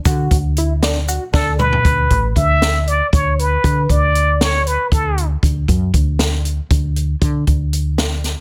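A brief, bright and driving progressive instrumental in 7/8 opens with a tight, wave-folded synth arpeggio glinting through chorus and phaser, a grainy tube shaker in the background and a barely audible hollow-body jazz guitar, all over a round, woody fretless bass and an open jazz drum kit with a high-tuned snare and boomy kick. At 1.3 seconds a plunger-muted trumpet enters with the solo melody up front, with wah-wah, scooped notes and light vibrato, as a drum fill leads into the second section at 1.8 seconds, while the bass and drums carry on beneath it. The sound is dry and dense, with a heavily limited modern master and only plate reverb on the trumpet and synth.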